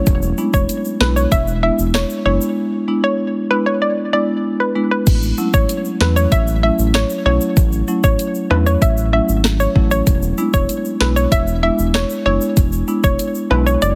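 Sunny, summery dancehall at 96 BPM in A major, this excerpt sets a deep, round analog bass and an electronic afro-pop drum kit with a sharp snare and rim click beneath a marimba accompaniment played with medium mallets, a hollow, bouncy square-wave pluck melody shimmering with chorus and digital delay, and ringing egg shaker and timbales, all pressed into a dry, heavily compressed radio sound that breaks into a silent gap from 2.6 to 5.1 seconds before returning over A6 and then E7.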